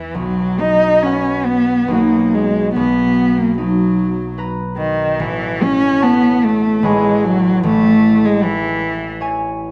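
Cello and harp begin together in this dreamy, luminous impressionist classical duo, a short passage cut from a longer piece. A single bowed cello carries the melody up front, its tone rich, smooth and even, shaded with vibrato in a range from D#3 to D#4. Beside it, a fingerpicked concert harp supplies ringing acoustic accompaniment across a broad span from A1 to A#5. The music moves in a rubato 3/4 at roughly 66-78 BPM in B mixolydian, tuned to A4 = 439 Hz, drifting from B through D#m7/B and Bmaj7 to A6, C#m7/A and Amaj7. A recital hall's reverb, with a 1.6 s decay, surrounds both players, and the cello stops at 9.2 seconds while the harp sounds on alone until 9.7 seconds.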